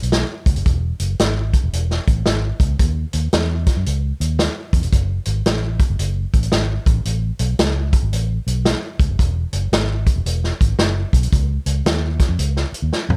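This is a dry recording, with both parts sitting up front and the drums captured in a small, natural-sounding room. It is a short cut from a longer uptempo 1960s-style soul piece, urgent and passionate in mood, with a swung 4/4 feel. A vintage acoustic drum kit plays throughout, its medium-tuned snare and punchy kick joined by hi-hat and toms, all with a rolled-off top end. A vintage muted electric bass, played with the fingers, runs alongside from start to finish in a low register, its foam-muted tone dark, round and amped. A drum fill arrives at 12.9 seconds, just before the recording ends at 13.2 seconds.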